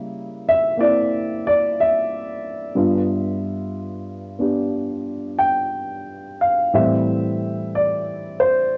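A dark concert grand piano, placed up front with a mellow tone and deep bass, carries this brief solo jazz fragment from 0.0 to 8.8 seconds. The mood is warm and relaxed, set at a slow 60 BPM in 4/4, with a rubato feel and a 69% swing on the eighth notes. Moving through G mixolydian and tuned to A4 = 438 Hz, the piano spans G2 to G5 as the harmony passes from C#dim7 to G7 at 2.7 seconds and Am7 at 6.7 seconds. A cassette tape coloring lends the instrument a vintage character. Light reverb and a small room ambience frame this home recording, which is cut from a longer piece.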